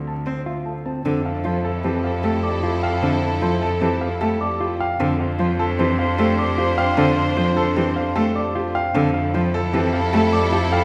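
A warm concert grand piano melody with audible action noise opens over an up-front bowed cello bass, and a rich, close cello, a dark, clean electric guitar and a bell-like celesta quickly join with accompaniment and arpeggios before a distant, mellow soprano saxophone line and lush symphonic strings enter at 1.1 seconds on an Fmaj9 chord, giving this propulsive, hypnotic minimalist classical pattern piece in 5/4 at 152 BPM in F major a wet scoring-stage reverb.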